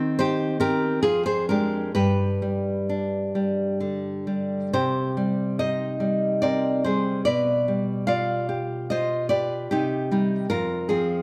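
A nylon-string guitar carries this brief romantic piece alone, its tone warm and up front as it is fingerpicked in the classical manner across a range from F2 to F5. The music sits in C minor and moves in 3/4 at a flexible rubato pulse hovering between 63 and 77 BPM, giving it a passionate yet intimate character. The harmony opens on C minor over E-flat, passes through a diminished chord and settles on G by 1.9 seconds, then returns to C minor, leans on G7 and closes toward F minor near 10.5 seconds. A moderate recital hall reverb, with a decay of 1.7 seconds, surrounds the instrument with a sense of space while keeping its detail close. The 11.2-second excerpt is cut from a longer piece.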